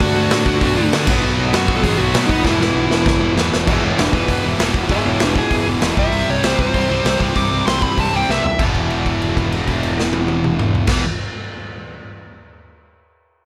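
Punk rock at a brisk 195 BPM in straight 4/4, this energetic, rebellious excerpt drives forward with a raw garage drum kit up front, its punchy kick, gritty saturation and rolled-off top filling a pumping stone room, while a growly fuzz bass and two bright distorted guitars pick riffs in the background. A very quiet, double-tracked crunchy guitar adds its riff until 6.0 seconds, and a dark, smooth lead guitar with overdrive and tape echo carries the melody, breaking into a solo from 3.7 seconds after a drum fill. The lead drops out at 8.6 seconds as the band lands on a held E5 chord through to the cut, the whole mix dry and close.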